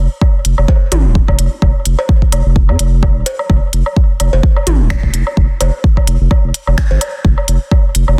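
Minimal techno with a quirky, hypnotic mood, this short cut from a longer piece rides a steady 4/4 frame with a light swing on the sixteenths. A deep, thick sine sub bass sits up front from the very start, saturated with a fast attack and sustained notes, pumping under sidechain compression. A punchy, layered electronic kick joins at 0.2 seconds and stays prominent, while a set of electronic woodblock, cowbell and toms enters at the same moment further back, tape-warm, soaked in tape echo and re-recorded in a large room. A techno drum kit arrives at 0.4 seconds with finger snaps and smooth hi-hats, its snare softly clipped and its sound re-recorded in a small room. The overall mix is dry and close, with a dense, heavily limited modern master.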